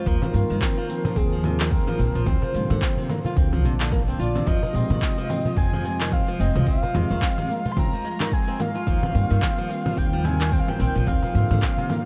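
A breathy, flute-like synth lead carries the melody with soft vibrato, coloured by analog chorus and delay, over a hypnotic, earthy organic downtempo groove in 4/4 with a swung sixteenth-note feel. Beneath it, a fingerpicked flamenco guitar plays arpeggios with audible finger squeak and delay, while a clean tine electric piano sits in the background, pumping with sidechain and trailing delay. A woody, thumpy pizzicato upright bass anchors the low end alongside a deep electronic kick that stands up front. Layered electronic shaker, congas and handclaps fill out the rhythm, joined by a very quiet clay-shell darbuka and a warbling, nostalgic tape-like pad holding sustained chords far in the mix. The chords move from Ebsus2 through Bb/D, Fm, Db and Ebadd9, and the dark, warm production with light reverb rounds out this short excerpt, cut from a longer piece.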